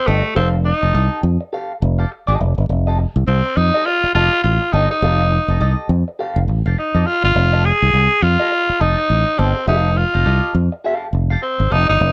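A raspy tenor saxophone leads this short funk passage, carrying the melody up front with a vintage, pop-style bite from the very first second. Underneath, a fingered electric bass sits close and punchy, holding down the low end at a level nearly matching the horn. A clean, picked electric guitar filtered through wah adds accompaniment in a higher register, tucked well behind the other two. The 16th notes carry a light swing, and the whole passage rests on a single F9 chord, giving it a gritty yet playful mood. A light reverb and small-room ambience keep the sound intimate, and the music is cut from a longer piece, ending at 12.1 seconds.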